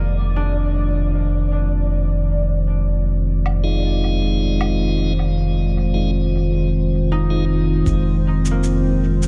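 Ambient dub at 78 BPM in F dorian, deep and spacious, resting on an Fm7 chord as a warbling, nostalgic pad holds dark, detuned chords under a filter sweep while a round, up-front sub bass sits on F1 and a mellow concert harp rings out arpeggios through tape echo. A bubbling, resonant stepped-filter texture drifts in the background until 7.9 s, and from 3.5 s muffled woodblock and cabasa join with dub echo, followed at 3.6 s by piping tonewheel organ stabs with key click and a stopped rotary speaker. A thumpy, tape-warm electronic kick lands briefly at 7.9 s in this cut from a longer piece, all inside a light reverb.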